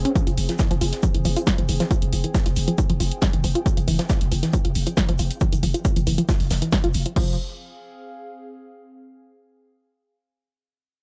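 A growling, buzzy 808-style bass and a warbling, lo-fi tape-like pad with chorus and built-in reverb open this dark, industrial peak-time techno excerpt at 137 BPM in F harmonic minor. A tight, detuned sawtooth sequenced riff with tube saturation, tape echo, sidechain pumping and a filter sweep soon joins. An up-front punchy electronic kick and a tape-toned analog drum machine come in with it, the drum machine supplying snare along with pumping hi-hat and crash, all set against a faint background studio kit of high-passed hats, shaker and snare. The pad fades through the first 7.2 seconds before carrying on alone from 7.4 to 8.9 seconds, all in a dry, gritty hardware sound.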